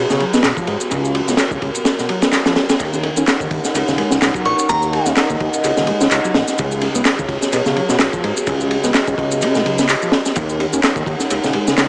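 Breakbeat at 127 BPM with a swung sixteenth feel, raw and funky, moving between Dbsus4 and Ebm7 in this excerpt cut from a longer piece. A crunchy, saturated acoustic breakbeat kit with a high-tuned snare, tight kick and dark ride sits up front beside electronic shaker and handclaps, while a fat, detuned sawtooth bass and a deep, moody analog pad with chorus and sidechain pumping fill the low and middle range, and an overdriven picked electric bass plays a round, punchy riff with 12-bit sampler grit further back. A glassy FM synth bell flashes a brief crystalline melody at 4.5 seconds, and the whole mix is echo-heavy, with spring reverb, small-room ambience and a small-speaker sound.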